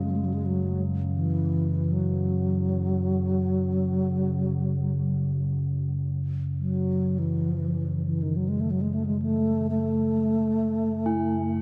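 World meditative music in free time and F# minor, this haunting, spacious fragment of a longer piece unfolds in a vast, echoing cathedral-like space. A mellow bass flute carries the melody up front with an airy, vibrato-laden tone, soft attacks, rolled-off highs and tape echo, over a deep, ominous, rumbling drone whose dark, wave-folded sustain rises slowly and rings on through its own built-in reverb. In the background a bright, metallic bronze singing bowl, struck with a wooden striker, sounds with slow beating for the first 2.8 seconds and returns at 11.1 seconds.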